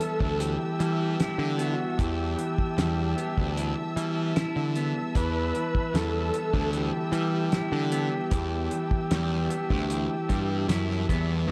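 A straight 4/4 groove from a cloth-damped drum kit, thuddy and dry with a fat snare and tight kick, anchors this mysterious, trippy psychedelic rock fragment cut from a longer piece, sitting on a single E minor chord throughout. A growly, fuzz-overdriven picked bass sits up front, while a twangy, slightly broken-up guitar through a small old amp plays a riff colored by phaser, and a mellow vintage combo organ with heavy vibrato carries the melody through delay until 10.7 seconds. High above, a veiled, con sordino string section holds distant sustained chords, all bathed in a dreamy plate reverb.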